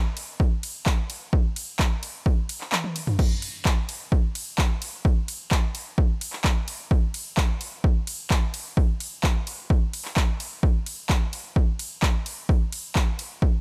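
The sound is dry and close, with little reverb, and both drum parts sit up front after being re-recorded in a small room. This anthemic, triumphant EDM passage, cut from a longer piece, moves at a straight 129 BPM in 4/4. A punchy, layered electronic kick drives the beat from 0.4 seconds onward. Around it, a big-room dance drum kit brings crisp hats along with handclaps, crash and ride cymbals, and toms, its produced, electronic character sitting a little lower in level than the kick. At 2.7 seconds the kick drops out while a drum fill takes over, and the kick returns at 3.2 seconds to carry the groove through to the end.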